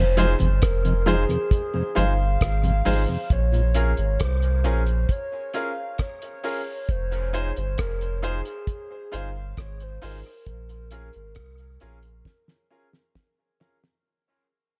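A hollow, woody clarinet-like synth lead with chorus, phaser and dub echo opens this deep, hypnotic dub reggae passage at 67 BPM, alongside a round sub bass and a mellow tonewheel organ whose key click and stopped rotary speaker are heard until 3.6 seconds. A bright baby grand piano adds stabs with audible action noise and long sustain, all echoed, while a cloth-damped, thuddy drum kit sits up front with a fat snare, tight kick, rim click and hi-hat over an Fm7 to Bbm7 progression. The dark, lightly reverberant mix fades throughout, with a break from 3.3 seconds and a drum fill from 12.3 seconds closing the cut.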